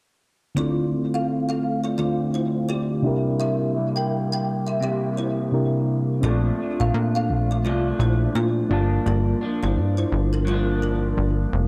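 Set at 85 BPM in 4/4 with a 60% swing on the sixteenths, this hazy, mellow indie pop excerpt drifts through a Dm7, C7, Bbmaj7 and Gm7 progression under a dark production and a moderate spring reverb. A reedy, clean electric piano opens at 0.5 seconds as accompaniment, its tone softened by a low-pass filter. It is joined almost at once by an up-front, slightly broken-up electric guitar through a small old amp, picked and compressed, coloured by lush chorus, vibrato and its own low-pass filter. A woody, hollow-box kalimba carries the second line with bright, ringing thumbnail plucks, given shimmer by an ensemble chorus and analog delay. At 6.2 seconds a punchy, funky analog bass arrives up front, its sawtooth and square-wave tone shaped by a fast-attack filter pluck that then decays. A filter sweep runs through the whole passage, adding motion to the warm haze.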